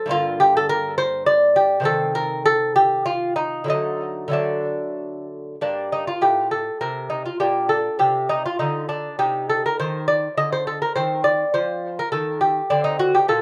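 Recorded outdoors with a touch of light reverb, this short excerpt of an introspective, flowing baroque-style dance in G minor features a solo lute set up front, its delicate fingerpicked gut strings, paired and partly octave-doubled, carrying a slapback echo as the 3/4 lilt moves at a rubato 101 BPM through a phrase heard twice, the second pass beginning at 5.6 seconds and coming to rest on D.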